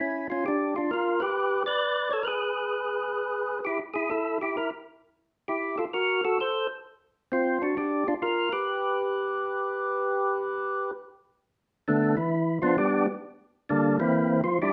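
A percussive tonewheel organ carries this swinging, soulful jazz fragment, cut from a longer piece. Its fat tone carries a light overdrive, with third-harmonic percussion and key click, and it turns through a slow rotary speaker. Moving in 4/4 with a swung eighth-note feel, the organ works through G7, E, Emadd11 and D7 before returning to G7. At 11.4 seconds it launches into a solo over G9 and C9 that runs to the close at 14.7 seconds. The organ sits up front, while a wet studio reverb adds a touch of room depth.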